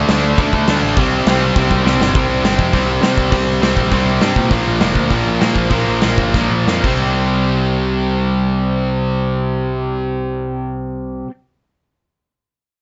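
A bright, up-front distorted electric guitar drives this upbeat, energetic punk rock fragment, joined by a warm, overdriven semi-hollow guitar as both play the riff over D5, C5 and Bb5 chords in straight 4/4. Underneath, a growling picked electric bass with its own overdrive adds grit down low. A big acoustic rock kit pushes things along at 173-204 BPM, with a punchy kick, a medium-tuned snare, hi-hat and crash, and fills at 1.9 seconds and again just before the kit drops out at 6.9 seconds. The pace slows from 4.5 seconds, after which the guitars and bass carry on alone to the end at 11.3 seconds. The sound is dry and close, with a loud mix whose top end is rolled off.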